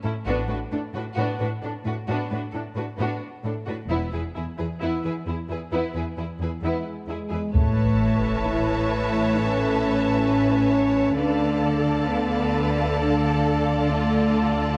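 Majestic and adventurous, this cinematic orchestral passage, cut from a longer film score, moves at a stately 66 BPM in 4/4 and sits in A major. Bowed strings carry the opening build-up: a close, expressive violin section sings the melody with vibrato from the background, while a focused second violin line and smooth, even violas fill the middle, over an up-front cello bass joined at 0.3 seconds by lush double basses. The harmony travels from Bm7/A to E before a mellow, tightly played French horn section enters at 6.6 seconds with sustained chords. At 7.5 seconds the music lands on Aadd9 with compressed, saturated taiko drums struck with heavy sticks and a huge, bright sub drop, both set back in the mix. The passage then turns to Dm at 11.2 seconds, the strings and horns ringing in a moderate scoring-stage reverb.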